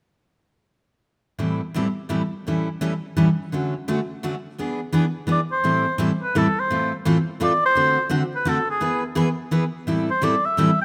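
Virtuosic and fiery, this short jazz waltz excerpt swings in 3/4 as a bright, full-bodied picked steel-string acoustic guitar starts the accompaniment at 1.4 seconds, sitting up front through Am7, A7 and Dmaj7 changes. A close-miked oboe with light vibrato and a warm, classical-style tone takes the solo melody from 5.3 seconds, also placed up front. A moderate, lush hall reverb surrounds the pair in a rough home-demo mix, and the chords resolve back to Am7 near the end.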